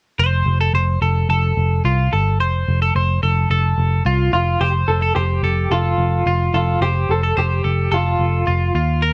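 Nostalgic and breezy, this short cut from a longer jangly indie pop piece moves at a straight, easy stride, with a chiming, compressed twelve-string electric guitar playing arpeggios over a dark, round, foam-muted picked bass from the start. At 4.3 seconds a second electric guitar enters through a small old amp, slightly broken-up and twangy, carrying the melody with tremolo and slapback echo as the harmony briefly drops out before returning to F. The sound is dry and up front, coloured by worn, warbling cassette tape with a warbly pitch drift.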